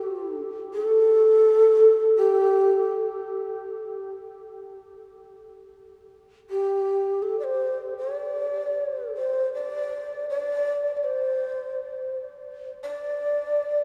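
A lone shakuhachi plays up front from 0.0 to 13.8 s in this austere, calm fragment of Japanese traditional chamber music, its breathy, mellow bamboo tone moving between G4 and D5 with crisp, chiffy attacks, vibrato and rolled-off highs, floating in free rubato around 76-86 BPM while a huge, wet reverb with an 8.0 s tail places it in a vast, echoing space.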